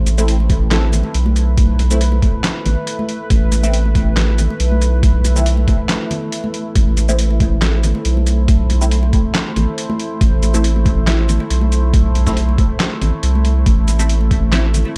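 Dark and brooding, this deep dubstep excerpt moves with a half-time, lightly swung feel over a single minor chord. A deep, moody pad holds sustained chords throughout, its slow attack and long release softened by chorus and built-in reverb, while a thick, saturated sub bass sits up front with a fast attack and sustained low notes. A gritty, compressed trip hop kit of handclaps, hi-hat, shaker and a medium-tuned snare starts at 0.1 seconds. An electronic kick drum, sampler-style, pitched down and thumpy, joins at 0.5 seconds, and both are treated with studio reverb. Acoustic congas from a small room sit in the background with dub echo, and a muted, nasal chord stab with a filter pluck and moving notch decays through phaser, lush chorus and dub echo. A brief break arrives at 5.9 seconds, and the whole piece carries a dark, warm digital ambience with a faint mains hum.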